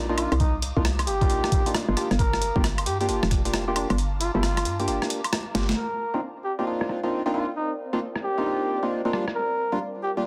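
This bouncy, moody two-step garage cut opens on a very quiet, ethereal pad of detuned sustained chords, a hollow, percussive organ stab colored by chorus, tape grit and delay, and a punchy, knocking FM bass up front. A trumpet in a bucket mute enters almost at once with a veiled, raspy, growling solo melody, its vibrato trailing into digital delay. Beneath it, a swung, sampler-style boom bap kit of hi-hat, rim click, high-tuned snare and woodblock sounds pitched down, compressed and overdriven, with its upper parts dulled by low-pass filtering, while a thumpy electronic kick anchors the opening bars. The kick falls away, a drum fill lands at 5.5 seconds, and the bass stops at 5.7 seconds on a band accent. From 5.8 seconds a filter sweeps across the airy pad as the stabs, trumpet and drums carry on over the Cm11 and Gm7 changes, all inside a moderate room reverb and a dense, heavily limited master.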